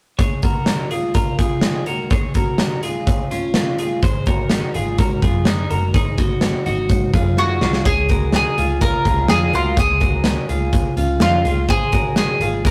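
A straight 4/4 pulse at 125 BPM from a big, dark rock drum kit with a punchy kick and medium-tuned snare drives this bright, nostalgic jangly indie pop excerpt in Db major, where a twangy, compressed twelve-string electric guitar chimes arpeggios from the start, a round, foam-muted vintage bass joins at 4.0 seconds, and alongside a drum fill a picked mandolin melody with analog delay enters at 7.4 seconds, all captured in a rough rehearsal-room recording with tube saturation and moderate studio reverb.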